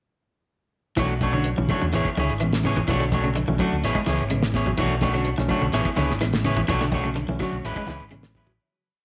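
Moderate echo-chamber studio reverb frames this short, hypnotic and defiant afrobeat piece at 126 BPM in B dorian, where a dry, lo-fi, muffled, cloth-damped drum kit with a fat snare and tight kick, a round, punchy hollow-body bass riff, a twangy background guitar ostinato and an up-front, slightly broken-up guitar strumming upper chord shapes with warbly pitch drift cycle between Bm9 and Amaj9. Very quiet woody claves, ringing congas and a reedy tremolo electric piano's syncopated stabs play alongside them, before a fade-out from 6.7 seconds.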